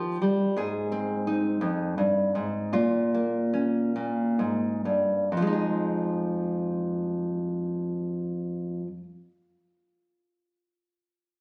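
A nylon-string guitar plays alone, fingerpicked and up front, its dark classical tone carrying a faint finger squeak as it moves between F2 and Ab4. This short folk fragment, cut from a longer piece, sits in F minor in a rubato 6/8, drifting around 41 to 58 beats per minute counted in dotted quarters. The opening passage slows from 0.6 to 5.3 seconds as the harmony moves from Eb through Ab to Bbm, and a second passage begins at 5.3 seconds on Fm7. The guitar falls silent at 9.0 seconds. Captured on a phone in the room with a light club reverb and compression, the sound feels close and intimate, giving the music a haunting, private mood.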